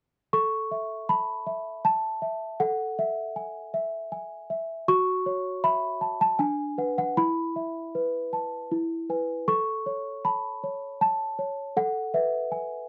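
In a gentle, straight three-beat sway, this innocent, tender classical lullaby is carried by a small solo celesta from 0.3 to 12.9 seconds. Its bell-like, sweet, mellow tone, struck with soft felt hammers, sits up front, moving through an unhurried chord progression that pauses on a suspended chord before settling home. The close, dry 1970s-style studio sound has a light touch of reverb, and the passage is cut from a longer piece.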